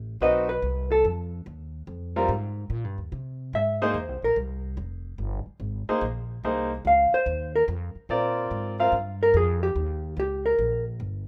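A swung 4/4 at 145 BPM drives this relaxed small-group jazz excerpt in Eb mixolydian, with a woody, growly pizzicato upright bass playing underneath from the start to 11.3 seconds. A dark, clean hollow-body electric guitar plays melodic phrases up front, the last one running from 6.9 to 10.8 seconds, while a brilliant, intimate upright piano with audible action noise and long sustain accompanies it until 8.9 seconds. Light reverb surrounds the trio as the harmony moves through chords such as Fm7, Bb9 and Eb7.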